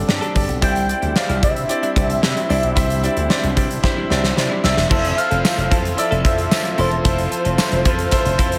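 A steady, straight 4/4 pulse at 112 BPM drives this glossy, romantic slice of 1980s-style pop, cut from a longer piece and set in a light, small-room ambience. Up front, a gated 80s drum kit pairs a fat snare and tight kick with bright cymbals, hi-hat and tambourine, and rolls into a drum fill from 3.8 to 4.9 seconds. A bright, amped slap bass with an envelope filter anchors the low end, while a clear concert grand piano with short sustain opens the clip with a quick fill before settling into accompaniment over chords moving from Gsus2 to Cadd9 and then Fmaj7. A warbling, detuned analog pad hums in the background, a very quiet, twangy clean guitar picks a compressed riff, and a bold, retro octave-doubled lead carries the melody with vibrato, chorus and tape echo. In the second half, a soft, pure FM bell adds a faint, decaying second line with phaser, and at 4.9 seconds an overdriven electric guitar joins in the background with analog chorus.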